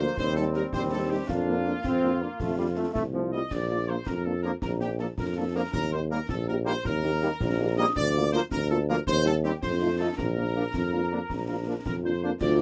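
Festive and spirited, this military-style march for wind band moves in 6/8, cut from a longer piece. A brilliant, tight trumpet section carries the melody with light vibrato, sounding distant and roomy, while an airy, hollow flute section adds a soft-edged second line high above, sitting in the background. Mellow French horns fill in the accompaniment, a bright trombone section holds sustained chords, and a present tuba anchors the bass up front. Concert snare drum, concert bass drum and dark-toned clash cymbals join at 0.2 seconds with an acoustic, live-room sound. Just as the passage closes at 12.4 seconds, a warm euphonium enters briefly on a second line, all set in light reverb.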